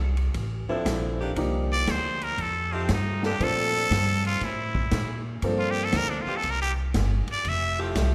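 The recording has a light reverb and carries some lossy compression artefacts, a short cut from a longer big band swing piece in F major at 118 BPM with a joyful, swinging feel. A woody, pizzicato upright bass sits up front from the very start, joined at 0.2 seconds by an acoustic drum kit in a big room, with dark cymbals, a medium-tuned snare and a punchy kick working across hi-hat and ride. At 0.7 seconds a clear upright piano enters with intimate accompaniment and audible action noise, while a warm saxophone section holds sustained chords with vibrato. The straight-muted trumpet takes the melody at 1.7 seconds, close-miked and nasal, breathy and raspy with scooped notes, light vibrato and a growling, gritty edge. The harmony moves through rich extended chords such as Dm9, Bbmaj9 and Gm11 before settling on Fmaj9.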